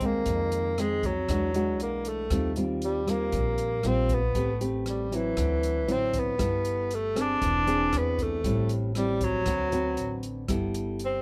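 Sophisticated and breezy, this bossa nova fragment, cut from a longer piece, moves at 117 BPM in a straight 4/4 feel in G major. A breathy tenor saxophone carries the melody up front in a mellow jazz style, with light vibrato and scooped notes, its tone sounding distant and roomy even as it leads. Beneath it, a dark, thumb-plucked nylon-string guitar plays classical-style accompaniment through chords such as Fm7, Am9, E7b13 and a closing G69, while a woody pizzicato upright bass on steel strings anchors the low end. An open acoustic jazz drum kit adds hi-hat, rim click and a boomy kick with an airy, polished small-room character. Close, detailed microphones and very little reverb keep the sound intimate, and all four parts play together across the roughly 11 seconds.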